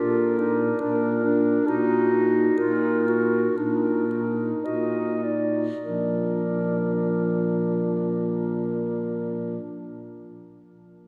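Bathed in a long, wet cathedral reverb, this brief excerpt of a serene classical piece for single-reed quartet unfolds with a rubato feel, easing back through its opening 5.9 seconds. A dark, distant clarinet carries the lyrical melody up front, with a warm alto saxophone with light vibrato and a smooth top on the second line, a clear, close-miked clarinet in the accompaniment, and a mellow, vintage-toned baritone saxophone holding the bass. The harmony shifts from Bb to a shadowed Ebm over Bb before resolving home as a new section begins at 5.9 seconds.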